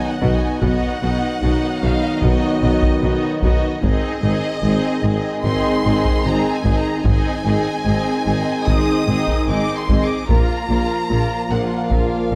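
Set in light reverb, this dark, relentless cinematic film-score excerpt at 74 BPM sets a lush, vibrato-rich violin melody over a darker second violin line and a focused viola accompaniment, while a clear trombone section and very quiet, distant French horns hold sustained chords, and cellos, double basses, a roomy tuba and a close, dry taiko ensemble struck with heavy sticks all enter at 0.2 seconds to drive the low end.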